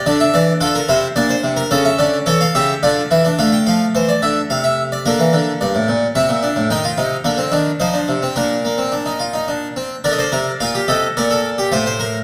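A recital-hall reverb surrounds a close-miked, up-front harpsichord whose plucked tone sounds full and dry at the source, with the character of two sets of strings. This contemplative, serious baroque-style three-part fugue for solo harpsichord moves at 108 BPM in 3/4 with a straight feel, spanning G2 to G5. It opens around D minor, settles into B-flat major from 6.7 s, returns to its opening material at 10.1 s, and is cut from a longer piece.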